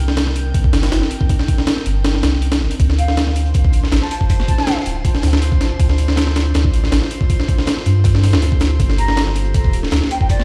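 A gritty, pitched-up breakbeat kit with a thumpy kick and high-tuned snare drives this atmospheric, nostalgic drum and bass excerpt in straight 4/4, joined at 2.8 s by a very quiet, dark, saturated second kit of hi-hat and snare. Beneath it a deep, round dub sub bass holds the low end, while an ethereal pad with ensemble chorus and 12-bit sampler grit and a glassy texture of drifting overtones sit in the background over chords moving from Cm9 to Dm9 and Gm9. A distant, hollow silver flute with vibrato and dub echo appears at 3.0 s and again at 9.0 s, and the whole mix sounds played on a big system in a bare room, bathed in large studio reverb and vinyl crackle.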